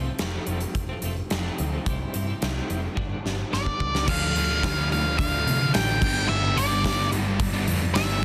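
Brooding and dark, this short cut from a longer quiet-loud alternative rock piece moves in a straight 4/4 and shifts from a subdued opening into a heavier second half at 4.1 seconds. It opens with a clean, compressed twelve-string electric guitar picking arpeggios in the background, coloured by tremolo and tape echo, over a round, hollow-body short-scale bass with a dark, amped tone. A huge acoustic arena kit sits up front with a hall sound, bright cymbals, a punchy kick and a medium-tuned snare, and a drum fill from 3.0 seconds leads into the louder part. Just before it, an up-front octave-fuzz lead guitar carries a high, distorted melody through tape echo. At 4.1 seconds the twelve-string stops and two double-tracked fuzz guitars take up a riff in the background, one mellow and one thick and murky. The chords move from F through C and G to D minor and back to G, and the dense, heavily limited master has only light reverb.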